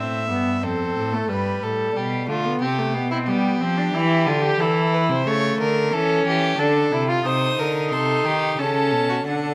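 Elegant and joyful, this baroque-style fugue for string quartet moves at 90 BPM in a straight 3/4, and it is cut from a longer piece. A second violin line with a warm, nasal character sits close and up front from the opening, joined by a rich, distant viola in accompaniment and a cello anchoring the bass from F2 to G3, also placed up front. All four bowed parts are each played by one player, with gut strings, period style and a reedy edge, and the second violin, viola and cello carry light vibrato. The harmony travels from A minor through F, G and a Cmaj7(no3) to G7, then on through C/E, A7/C#, D minor and Adim/C before settling on A/C#. At 7.3 s a distant first violin enters high with the melody, reaching up to Eb6 and sitting lower in level than the other three parts. A moderate recital hall reverb with a 1.8 s decay surrounds the quartet.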